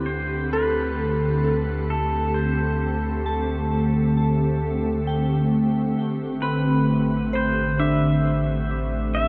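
A huge, wet ambient reverb with a long 8.2-second tail surrounds this spacious, melancholic ambient excerpt, which moves at a slow 66 BPM in a straight 4/4. Up front, a glassy, ethereal FM pad holds sustained chords with a slow attack and long release, its vintage warble thickened by ensemble chorus and its own built-in reverb. A soft, pure synth bell traces gentle arpeggios with a fast attack and decaying, mellow tone, carrying its own chorus and delay. Beneath them, a deep, round sine sub bass sustains the low end, while a clean electric pedal steel guitar, played with fingerpicks and compressed, sings a warm slide melody with volume swells and delay. All four parts play throughout the 9.3 seconds as the harmony shifts from D7sus4 to Am11 at 6.0 seconds.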